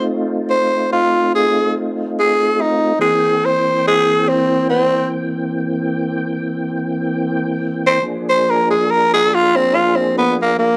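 A growling tenor saxophone carries the melody up front in this rollicking, laid-back blues excerpt, its breathy subtone raspy and gritty with soft attacks, set in plate reverb. Beneath it a clean tonewheel organ holds sustained chords through chorus vibrato and a slow rotary speaker, moving from F7 to C7 at 3.0 seconds and Bb7 at 8.0 seconds. The slow 12/8 pulse at 48 BPM sits in a wet club reverb with a short 0.6-second tail.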